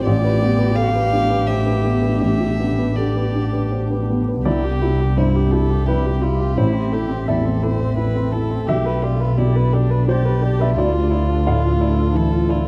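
A warm violin, a dark upright piano and a granular cloud pad open this longing, reflective passage of neoclassical piano and strings, cut from a longer piece, moving in a rubato 3/4 at roughly 79-88 BPM. The piano sounds woody and intimate, its action noise audible and its short sustain giving a vintage feel, while the pad sits in the background as a cloudy, blurred, wave-folded haze with its own built-in reverb. The violin carries the melody with a soft attack, airy sul tasto bowing and a pure, floating tone, touched by a slapback echo. Beneath it, a dark, nasal viola adds vibrato-tinged accompaniment, and a dark bowed double bass, placed up front and close, anchors the low end with light vibrato. The harmony drifts from G/A into C at 4.5 seconds, then through Am and G/B to a Dmadd9, all within a dry, dark and warm production.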